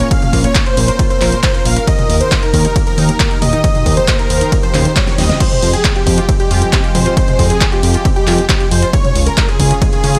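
This bittersweet, emotional slice of uplifting trance opens with a thick, detuned supersaw carrying the melody with dub echo and sidechain pumping, joined by a very quiet, catchy square-wave unison lead playing a second line, while dark, bowed studio strings hold soft-attack chords and a lush, bright unison pluck spins echoing arpeggios in the background. A fat, saturated analog bass pumps underneath, and a punchy electronic kick up front sits alongside a layered big-room kit with a huge snare, handclaps, hi-hat, ride, crash and toms, which plays a fill at 5.1 s as the harmony moves from Bbm through Eb to Fmadd9 and Db. The mix is dry, with little reverb.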